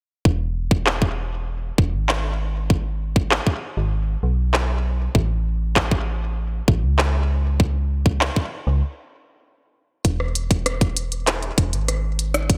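A dark, metallic FM bass and a tight electronic kick open this wistful, glitchy IDM excerpt at 0.3 seconds, with a filter sweep moving over the bass, before a delayed glitchy kit of handclaps, clicky hi-hats and rim clicks joins at 0.9 seconds; everything drops into a stop at 8.8 seconds before a new section, all set in light reverb with bright, 1980s-style digital production and tape-warm drums that sound re-recorded in a large room.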